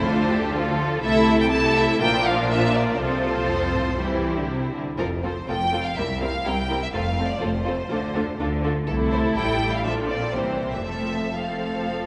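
A quick classical-period movement for string orchestra, this spirited, cheerful passage is cut from a longer piece and runs about 12.1 seconds in a straight 4/4. The first violin section carries the melody up front with a focused, vibrato-rich tone and a smooth top, while a second violin section sits more distantly on a second line, even and lush. Beneath them the viola section supplies close, warm accompaniment, and the cello section gives the bass a smooth, even foundation. The double bass section also plays the bass, with expressive portamento. All five sections play bowed throughout, set in a wet concert hall reverb, and the recording holds nothing above 10.8 kHz.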